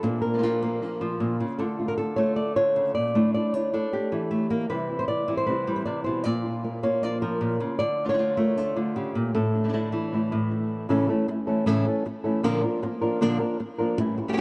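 In a straight 4/4 at 155 BPM, this mournful, dramatic flamenco fragment in A phrygian dominant cycles through Bb, Dm, Asus4 and C before moving to a new section at 10.9 seconds that lands on A and then Bb. An up-front, thumb-plucked acoustic flamenco guitar carries the melody from A2 to D5, while a second thumb-plucked guitar plays stabs beneath it, its finger squeaks audible. Both sit in a huge, ambient reverb with a long tail, giving the dark, warm production a cavernous, brooding feel.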